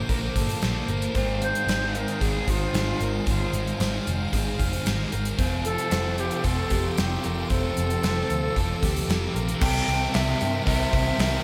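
Shoegaze and dream pop rock at 113 BPM, wistful and hazy, cut from a longer piece, where a thick fuzz guitar riff and an overdriven guitar riff washed in reverse reverb sit over a dark, round, foam-muted picked bass and a punchy, up-front gated 80s drum kit with bright cymbals, while a slightly broken-up guitar plays arpeggios with tape echo until 9.6 s, an icy, crystalline glass pad holds sustained chords behind, and a hollow, close-miked concert flute with vibrato carries the melody from 1.4 s, moving from Bbadd9 through Ab6 and Fadd9 to C7 in a light studio ambience.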